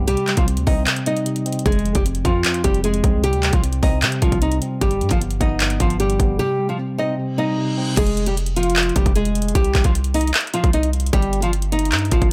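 Set in a digital ambience, this menacing, eerie trap cut from a longer hip hop piece moves at 152 BPM in a half-time feel in C minor, with a small, fingerpicked nylon-string guitar carrying the melody up front through a delay. Beneath it, a deep, sine-toned 808-style bass with a fast attack and long decay holds the low end, while a clean, mellow tine electric piano heard through its built-in speakers adds warm accompaniment until 8.0 seconds. The produced electronic trap kit sits up front with a hard-clipped kick, bright hats, handclaps and crash, re-recorded in a small room and dropping into breaks, and an electronic reverse cymbal rises at 7.4 seconds into the next section.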